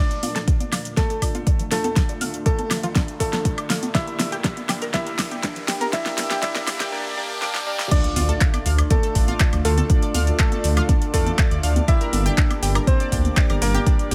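Progressive house at 121 BPM in D minor, this emotional, dreamy excerpt moves between D minor and G minor, building for its first 7.9 seconds before dropping into a fuller groove. A brilliant grand piano carries the melody with dub echo, over a round analog pluck playing arpeggios in the background with chorus, echo and sidechain pumping, and retro, glossy polysynth stabs that also pump. A shimmering, ethereal ambient pad holds sustained chords very quietly, while a very quiet riser, swell and impact add effects until 9.9 seconds. The deep house kit brings a fat snare, metallic hats, handclaps, shaker, woodblock and crash with a tape-tinged tone, congas sit in the background with a small-room character, and a deep, up-front electronic kick anchors the beat. During the build, drum fills and filter sweeps on the pluck and polysynth lead to a swell from 6.9 seconds and an impact at 7.9 seconds. 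At the drop, a dark, rumbling detuned saw bass enters at 8.2 seconds with pumping sidechain, and a reversed, swelling texture appears very quietly at 9.2 seconds.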